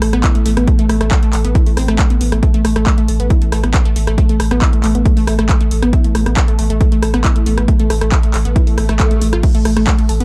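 A punchy, up-front analog kick drives this hypnotic peak-time techno excerpt at 137 BPM in straight 4/4, tuned to A4 = 438 Hz, arriving at 0.2 s beneath a thick, saturated sine sub bass on A1 with overdrive, low-pass filtering and sidechain pumping, a lush, detuned sawtooth unison pluck riff spanning A3 to A4 with a noise layer, phaser, dub echo and pumping of its own, and an analog drum machine of crash, ride, hi-hat, handclaps and rim click whose hats and cymbals pump in the sidechain, while a faint electronic swell appears in the background at 8.7 s, all within a dark production carrying light reverb.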